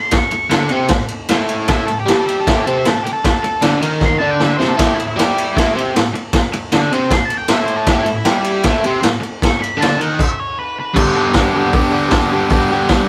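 This sounds like a rough rehearsal-room recording with a moderate amount of studio reverb, cut from a longer piece of swaggering, rowdy garage rock in a straight four-four. An octave-fuzz lead guitar plays a solo from the opening, its tone dark and distorted, sitting a little behind the other parts. Underneath, a double-tracked overdriven electric guitar carries the riff, bright, picked and compressed, placed up front beside a raw garage drum kit. The kit has a small-room, mid-forward character, with a punchy kick, a medium-tuned snare, saturated grit and a rolled-off top, and it moves across crash, ride and hi-hat with a fill at 4.0 seconds. A stop at 10.2 seconds closes the solo, and at 11.0 seconds the harmony shifts from A5 to G for a new section carried by the riff guitar and drums.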